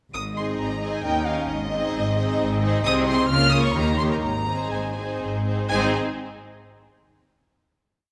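Cheerful and lively, this complete miniature is a quick classical-period movement in 3/4 and Ab major for symphony orchestra, moving at 118-135 BPM with a rubato feel. A dark, woody first violin section carries the melody up front, while a second violin section adds an expressive line of syncopated and sustained chords, and distant, smooth violas fill in the accompaniment. Beneath them, a focused, lush cello section plays bass on the beats, doubled by close double basses, all bowed with vibrato in a wet scoring-stage reverb before the piece settles on a final chord at 5.7 seconds.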